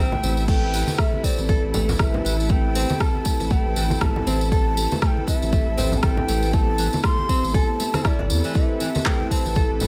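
A swung 4/4 groove at 119 BPM drives this earthy, spiritual afro house passage in A minor, resting on a single Am7 chord. A deep, up-front electronic kick enters at 0.5 seconds with a tape-warm deep house kit of crash cymbal, handclaps and rim click, which drops out at 9.2 seconds. Soft-handed, low-tuned congas with a thin skin sit in the background next to a jingly tambourine, while a round, dark analog bass with a fast attack sustains underneath. A fingerpicked nylon-string guitar plays bright classical arpeggios, and a lush bowed string section holds sustained chords in the background, both pumping with sidechain like the bass and the synth brass. Mellow, full-bodied synth brass stabs built from detuned sawtooth tones carry chorus, vibrato and tape echo. Over the top, a breathy bamboo bansuri sings the melody with tongued notes, vibrato and its own tape echo, all set in a studio reverb.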